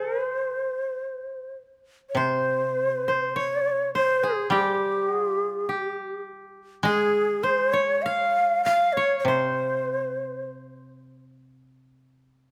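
Japanese traditional chamber music, calm and austere, moving in an unhurried rubato as a breathy, hollow shakuhachi carries the melody up front with vibrato and a chiffy, crisp attack. A koto played with fingerpicks traces a dry, woody second line in the same register, while another koto of that same plucked character supplies low accompaniment. The shakuhachi falls away at 10.5 seconds and the upper koto at 11.0 seconds, leaving the low koto alone until 12.5 seconds in this fragment of a longer piece, captured by close, detailed microphones with light reverb.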